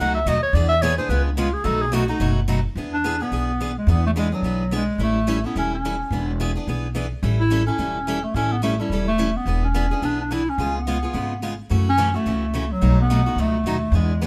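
Heard up close in a lightly reverberant room, this lively, charming jazz manouche swing clip, cut from a longer piece, puts a warm clarinet, a bright picked parlour steel-string guitar and a woody pizzicato upright bass on gut strings all up front. The clarinet carries the melody in jazz style with vibrato, subtone and scooped notes, taking a solo over the first 2.8 seconds. The guitar's accompaniment shows a little finger squeak, while the dark, thumpy bass anchors a bouncing progression that leans on dominant seventh chords and closes on F#m7 and B7.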